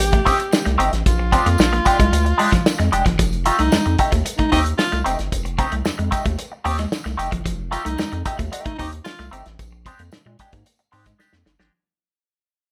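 This playful funk excerpt opens with everything at once: a warm soul drum kit with a tight kick and medium-tuned snare, a round, deep analog bass, a clean semi-hollow electric guitar run through wah, and a slightly broken-up second guitar playing a riff bathed in spring reverb. A breathy, whispered baritone saxophone carries a second line with vibrato and a soft attack, sitting close and intimate until it stops at 9.3 seconds. The groove moves at 112 BPM in a straight 4/4, centred on F mixolydian and shifting between rootless F9 and Bb13 chords. Far back in a large room, a jingly tambourine adds bright shimmer. From 3.2 seconds the track fades out, and a drum fill closes it at 11.2 seconds under light reverb.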